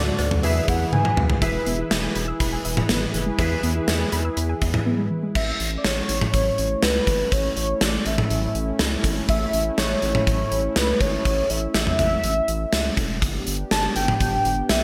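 Bright 1980s-style digital production, with a moderate plate reverb and small room ambience, frames this upbeat synth-pop excerpt cut from a longer piece. A gated 80s drum kit sits up front from 0.2 s, its punchy kick, medium-tuned snare, toms, hi-hat, cowbell and bright cymbals ringing in a gated stone room, with a drum fill near the opening. A round, deep analog bass built from square and sine tones and a warm, detuned sawtooth pad with slow attack and chorus hold the foundation throughout. A clear concert grand piano plays accompaniment in the background early on, and from 1.4 s a soft, dark pluck adds arpeggios through chorus and delay. A velvety, mellow synth lead of detuned unison sawtooth with vibrato briefly states the melody at the start, then after a short silent gap returns to carry it from 5.4 s to the end, as the harmony moves from E to A and later G.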